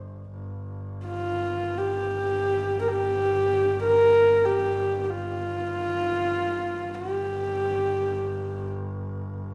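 Solemn and vast, this brief free-time fragment of Mongolian folk music in G yu mode opens on a bright, biting bowed double bass drone held low on G1 with intense vibrato, before a dark, husky horsehead fiddle enters at 1.1 seconds, up front and intimate, with an airy bow, soft attack, light vibrato and gliding portamento across a melody from F4 to Bb4, both played live together in a large studio whose lush reverb lends the sparse duo an expansive air.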